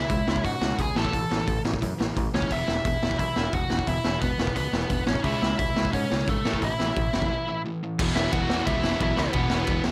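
A short cut from an energetic, rowdy punk rock track in E major at 175 BPM opens with a biting, bright lead guitar carrying the melody up front over two very quiet overdriven rhythm guitars, one crunchy and one sludgy and dark, both picking riffs in the low register. A growly, punchy picked electric bass, overdriven and sitting in the background, joins them from the start, and a raw garage drum kit enters at 0.1 seconds with a punchy kick, medium-tuned snare, hi-hat, ride and crash, sounding saturated and gritty with a rolled-off top in a small room. The chords move from C#m to A5 and E5, then repeat the cycle. A break arrives at 7.3 seconds, and at 8.0 seconds a new section begins on E5 as a double-tracked distorted electric guitar adds a very quiet riff. The mix carries little reverb, keeping the sound close and raw.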